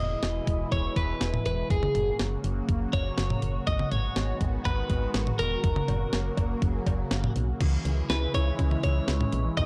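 Nostalgic and upbeat, this synth-pop excerpt lays a clean, picked twelve-string electric guitar melody with spring reverb over a lush, detuned sawtooth pad swirling with chorus and phaser, a punchy, round FM bass and a thumpy 12-bit drum machine with cowbell, toms and crash that enters at 0.2 s, while a warbling, lo-fi pluck arpeggio slips in at 7.6 s in the background, captured as a dry, gritty cassette-tape recording with digital ambience.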